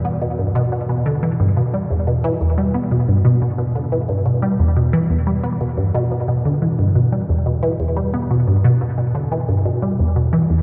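A resonant blip pluck carries this short ambient excerpt alone, its juicy, squelchy tone built from detuned square and sawtooth waves with a noise layer, snapping in with a fast attack and short decay while sitting up front in the low register. Phaser, analog chorus and analog delay color the pluck, and a cathedral reverb with a 5.6-second tail places it in a vast, echoing space. The effect is expansive and hypnotic across its 10.6 seconds.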